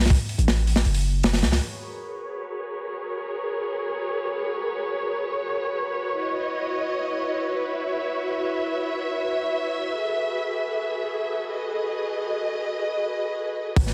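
Frenetic and dark, this drum and bass and jungle excerpt in G# minor moves in free time and opens on a drop. For the first 1.6 seconds, a crunchy, saturated breakbeat kit with a tight kick, medium-tuned snare and hi-hat sits up front beside a deep, mellow 808-style bass whose long sine tones strike fast and then decay. At 1.6 seconds both give way to a dark studio string section, bowed as a lush ensemble with vibrato and a woody, smooth-topped tone, holding sustained chords through G#m11, C#m11 and F#m11. Vintage 12-bit sampler grit colors the strings, and a low-pass filter sweeps across them through this long passage. The drums and bass return briefly at 13.8 seconds before the cut. A wet echo-chamber reverb and heavily compressed, radio-like sound give the whole piece a studio ambience.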